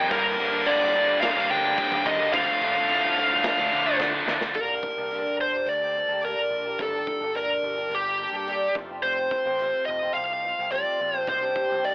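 Quiet-loud alternative rock in G minor at 107 BPM, this angsty, cathartic fragment of a longer piece has the lo-fi character of a home cassette recording with a telephone-like tone and light reverb. A dark, high-gain lead guitar carries the melody up front throughout, while a bright, double-tracked distorted guitar riff drives the opening alongside it until 4.6 seconds, moving from Gm to Dm. Beneath them, a growly, punchy overdriven bass holds the low end, and a big rock drum kit with a boomy kick, medium-tuned snare, hi-hat and crash sits in the background, closing the first passage with a fill at 4.0 seconds. When the riff guitar stops at 4.6 seconds, a boxy, swing-style acoustic guitar enters with picked arpeggios colored by tape echo, as the harmony shifts through Gmadd9, F and Cmadd9. The whole fragment carries a worn cassette grain that gives its catharsis a raw, intimate edge.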